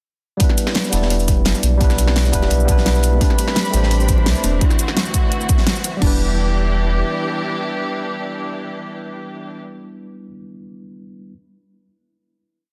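Dreamy and rolling, this short liquid drum and bass piece opens on a drop where a clean tine electric piano with tape echo holds chords over a punchy electronic kick, a pop drum kit with a fat snare, cabasa and crash, a gritty looped breakbeat buried in the background and very quiet bongos and congas, with a deep, up-front sub bass with octave arriving at 0.9 seconds, before a rich bowed string section with sidechain pumping and a soft, harp-like synth pluck with chorus, phaser and digital delay join at 3.2 seconds, and the strings and piano sustain a final chord from 6.0 seconds.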